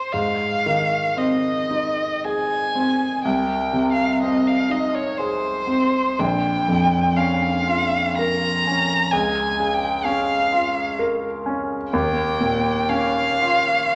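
Romantic classical duo in a rubato triple metre, lyrical and serene, cut from a longer piece. A warm, vibrato-rich bowed violin carries the melody up front with expressive portamento and a smooth top, while a clear, worn concert grand piano accompanies intimately, its deep bass, short sustain and audible action noise close at hand. Both play throughout the roughly 13.9 seconds in a wet recital-hall reverb, the harmony moving from Ab through Bbm to a closing Eb9.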